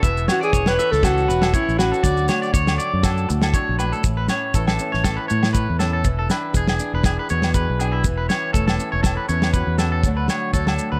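A lightly reverberant small-room sound frames this danceable, carefree highlife guitar band passage in a swung 4/4, cut from a longer piece. A breathy alto saxophone with light vibrato sings a short, up-front melody from 0.3 to 2.5 seconds, while a twangy electric guitar on the edge of break-up picks arpeggios through tape echo over a dark, fingerpicked flamenco guitar with audible finger squeak. A punchy fingered electric bass and a damped 70s drum kit with a tight kick and medium-tuned snare carry the groove, alongside grainy maracas and ringing agogo bells in the background.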